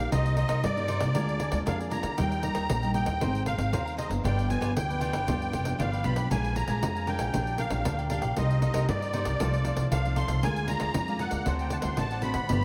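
A lively, bittersweet samba and choro piece in C minor at 116 BPM opens with a reedy, shimmering musette accordion carrying the melody up front with a touch of delay. Beneath it play crisp, picked cavaquinho, full-bodied fingerpicked nylon-string guitar and a woody pizzicato upright bass that also sits forward, with a jingly pandeiro joining at 0.1 s. The chords move from Cm7 through Eb, Abadd9 and G7 to Bb7 and reach D7 at 11.5 s, all inside a dreamy, reverb-soaked mix with a faint mains hum.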